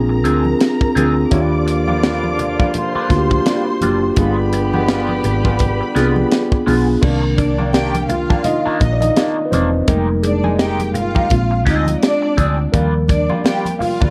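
A mellow tine electric piano carries the accompaniment in this lush, bittersweet 1970s-style soul excerpt at 84 BPM with a swung sixteenth feel, then takes a solo from 7.0 seconds. A tight funk kit with a high-tuned snare sits up front beside a round, dark hollow-body bass, while ringing congas stay in the background and a slightly broken-up, twangy guitar with wah plays a riff. Bowed strings with vibrato and portamento carry a second line, and a clear vintage horn section adds stabs between 1.3 and 6.6 seconds, in a dark production with light small-room reverb.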